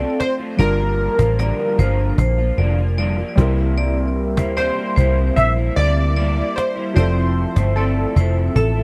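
A dry, close recording with a 1970s studio character and little room sound frames this hazy, lonely fragment of indie bedroom pop, which moves at an unhurried 75 BPM in a straight 4/4. Up front, analog keys carry the melody with a round, detuned sawtooth tone, a fast attack that decays, and a filter sweep, coloured by phaser, lush chorus and tape echo. Just behind it, a vibraphone struck with hard mallets, its motor off, plays a bright, metallic second line that rings through subtle chorus and tape echo. Beneath them, a dark, slightly broken-up electric guitar picked through a small old amp wavers with analog chorus and pitch drift, while a worn, woody upright piano, slightly detuned, with its action noise audible and a cassette-tape grain, adds intimate accompaniment. A punchy, foam-muted picked electric bass sits prominently with a round, amped tone, and a snappy cajon with snares is played with hard hands, as every part runs from 0.0 to 8.8 seconds over Dm7, Gm7, C7 and Fmaj7.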